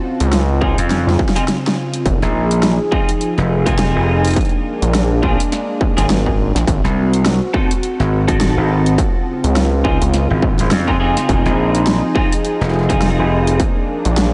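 A gritty, saturated synth bass with sawtooth bite and filter sweeps sits up front alongside an overdriven, punchy slap bass, driving a funky, playful glitch hop groove at 104 BPM with a swung sixteenth feel. A smooth, detuned analog pad pumps with the sidechain under a slightly broken-up, compressed electric guitar playing filtered stabs with tape echo, while a distorted electronic kick and a tape-warm dubstep kit with a huge snare and bright hats keep the beat, with a drum fill from about 0.9 seconds leading into a break from 1.5 to 2.1 seconds. Lightly reverberant, this excerpt moves through chords from Dbmaj7 through Fm7, Bb7 and Ab7b9.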